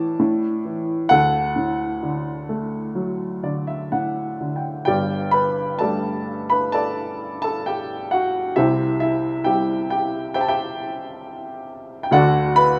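Calm and peaceful, this short cut from a longer classical piece features a lyrical solo upright piano, woody and polished, played with a gentle rubato sway in a slow four. After a brief fill between 2.9 and 4.9 seconds, the music settles into a new tonal centre as the piano ranges from deep bass up into its upper register. A moderate concert hall reverb gives the up-front instrument a soft, lingering halo.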